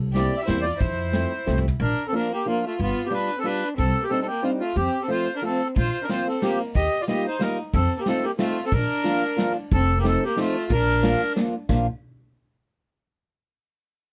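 In a swung 3/4 at 182 BPM, this charming, whirling musette waltz in Bb major sets a reedy, up-front accordion melody over a rich, smooth bowed violin line, a boxy fingerpicked parlour guitar, a woody, thumpy pizzicato upright bass, and a distant, roomy brush kit with dark cymbals that plays a fill at 1.5 seconds, drops out, and returns at 5.8 seconds, all in light reverb in this excerpt from a longer piece.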